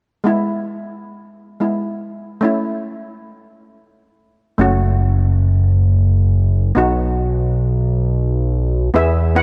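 A straight, even four-beat pulse drives this festive, sunny calypso, a short cut from a longer piece. A steel pan opens the accompaniment at 0.2 s with a metallic, shimmering tone struck with hard rubber sticks, set up front in a boxy small-room sound. It moves through a sequence of E, A, F#m and B chords. At 4.6 s a fat analog bass joins, thick and detuned, blending sawtooth and square waves with a filter sweep, a moving notch and a fast attack that holds its notes. Just before the end, at 9.0 s, a second steel pan slips in high with a brief melody, dark and smooth in colour. Light reverb gives the whole cut a touch of space.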